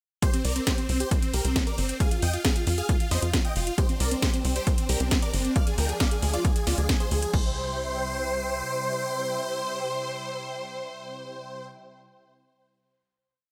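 Soaring and driving, this short uplifting trance piece runs at 135 BPM in a straight 4/4. It opens directly on a drop, where a huge, euphoric supersaw lead sits up front with a detuned unison body, repeating a riff melody in sixteenths over a pedal note, voiced in thirds and sixths, with sidechain pumping and a digital delay. A punchy electronic kick drives four-on-the-floor beneath a programmed kit of cracking snare on the backbeat, metallic hats and crash, while a tight, dark sequencer bass with a filter pluck pumps on the off-beats. A silky, nasal string pad with ensemble chorus and vibrato enters at 3.8 seconds, adding sustained chords as the progression moves from Csus2 to Ddim. The drums drop out around 7.4 seconds, the bass stops at 8.6 seconds, and the lead and pad hold a final C chord to close, all in a dry sound with little reverb.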